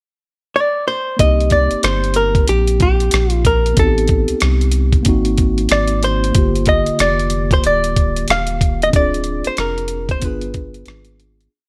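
Cool and nocturnal, this complete jazz-hop piece opens with a hollow-body electric guitar alone at 0.6 seconds, playing a short pickup before the band arrives at 1.2 seconds. The guitar sits up front with a dark, clean, picked and compressed tone, spinning a motif-based melody of song-like phrases. Beneath it, a mellow tine electric piano, heard as if through its built-in speakers, holds rootless chords decorated with grace notes, while a deep, round sub bass blending triangle and square waves walks along with muted ghost notes and chromatic approach notes. The gritty, compressed sampler-style drum kit is also up front, laying down a laid-back swung beat of thumpy kick, sixteenth-note hi-hats and rim clicks. The harmony moves through Cm7, Am7b5, Ab9, Gm7, Dm7b5 and G7b9 under a digital ambience, and the piece fades out from 8.9 seconds.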